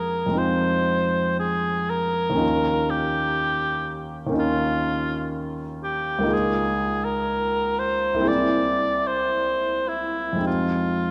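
Classical impressionist music in F minor, wistful and hazy, unfolds at a rubato 51-63 BPM in 4/4 as a cor anglais with light vibrato and a smooth top sings the melody up front over a clear, intimate grand piano whose audible action noise and long sustain color chords drifting from Fm7 through Db69 and Caug7 to Fm9, both playing throughout this 11.1-second fragment of a longer piece, set in a dark, warm production with a wet concert hall reverb.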